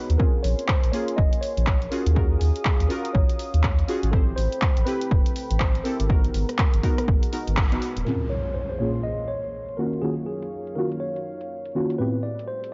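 Swung 16ths drive this warm, smooth deep house groove at 122 BPM, built on a punchy, overdriven electronic kick and an overdriven kit of handclaps, low-pass filtered hi-hats and rim clicks, with a round, up-front analog bass pumping under sidechain until the kick and bass fall away near 8 seconds and an electronic impact lands at 8.1 seconds, while a mellow tine electric piano with tape echo carries the melody over detuned, full-bodied chord stabs and a moody background pad moving through Bbm9, Ebm9, Am9 and Abm9, the whole mix dulled by a cassette tape sound and light reverb.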